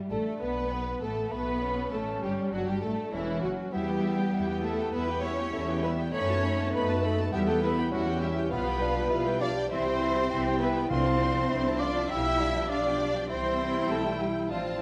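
A wet recital-hall reverb surrounds this cheerful, graceful classical-period orchestral excerpt at 100 BPM in 4/4, where a smooth, vibrato-rich violin section carries the melody over a woody second violin line and a pure, soft-attack flute, while lush cellos and focused double basses hold the bass, a mellow bassoon and an expressive viola section with portamento accompany, a dark, tight French horn section sustains chords in the background, the harmony settles into C major from 8.5 s, and round, soft-mallet timpani sound briefly from 10.9 s.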